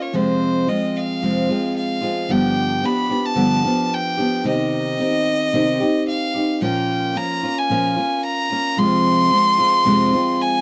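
Intimate and haunting, this short folk excerpt in F minor moves at 111 BPM in a straight 4/4, with a picked steel-string acoustic guitar supplying accompaniment up front while a single bowed violin carries the melody, also up front. The violin sounds bright and earthy, with light vibrato and an airy bow, and the guitar has a warm, auditorium-like body. Both play throughout the 10.6 seconds over a progression of Fm, G7, Cm and Bbm before returning to Fm, captured in a dry, close 1970s-style studio sound with little reverb.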